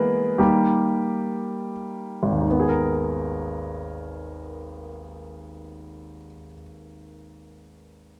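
Melancholic and dramatic, this brief pop fragment is cut from a longer piece and unfolds in a lilting 6/8 metre with a straight feel. A clear baby grand piano carries the whole accompaniment from 0.0 to 8.2 seconds, its polished, present tone sitting up front and ranging from deep bass notes at G#1 to the middle register at B4. The opening passage is the piano alone, slowing down over the first 2.5 seconds as it settles onto a D# chord at 0.4 seconds. At 2.5 seconds the music moves into a new section built on a G#madd9 chord, which lends the phrase an aching, unresolved colour. Light reverb and a dark, warm production give the recording a somber depth around the piano's clarity.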